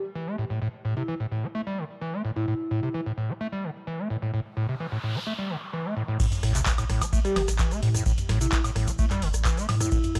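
Trippy and gritty, this acid house cut from a longer piece moves in a straight 4/4 with a dry, hardware-rough character. A squelchy, distorted acid bass riff sits up front from the start, its resonant square-wave plucks soaked in tube saturation, subtle chorus and tape echo. Soft-mallet vibraphone phrases ring in metallic and mellow between 1.0 and 3.0 seconds, returning later with their own tape echo. A noise sweep builds toward the drop at 6.2 seconds, where a sub drop and impact land as a deep, tape-warm kick, a booming analog drum machine and a grainy egg shaker all arrive. The drum machine brings a tonal snare, metallic hats, handclaps, rim clicks, toms, woodblock, ride and crash, filtered dark and set in studio reverb, while a round sine sub bass with sidechain pumping joins underneath at 6.4 seconds.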